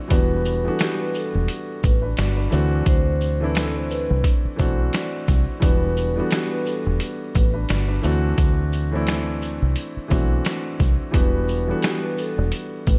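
A swung boom-bap groove at 87 BPM in 4/4 anchors this gritty, reflective hip hop excerpt in E minor, cut from a longer piece. The sampler-style drum kit sits up front, compressed and pitched down, with a thumpy kick, a medium-tuned snare, hi-hat and shaker. Beside it, a deep, foam-muted fingered electric bass sounds dark, round and punchy, moving through the low register as the harmony alternates between Em7 and D7. A warm concert grand piano supplies accompaniment from the very start with a full low end, and from 0.1 seconds a mellow vibraphone, played with soft mallets and the motor off, carries a metallic, ringing melody colored by tape echo. Jingly sleigh bells stay close and dry in the background, while light studio reverb and a layer of vinyl crackle give the track its dusty, lived-in character.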